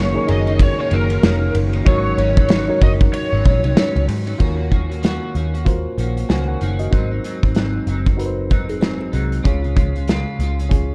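Indie pop with a bedroom-pop haze, this dreamy, nostalgic fragment of a longer piece moves at 95 BPM in 4/4 with a swung sixteenth feel, its chords drifting from Gb6 through Ebm7 and Ab7 to Db. An overdriven slide guitar carries the melody through chorus and tape echo until 4.0 seconds over a faint sawtooth string-machine cello pad, while a twangy clean electric guitar with chorus and vibrato and a reedy, worn, slightly out-of-tune electric piano keep up the accompaniment throughout. Up front, a round, foam-muted picked bass and a loose small-room drum kit with 12-bit sampler grit drive the groove, a woody kalimba with echo slips in briefly at 8.7 seconds, and studio reverb lends the production a dark, warm glow.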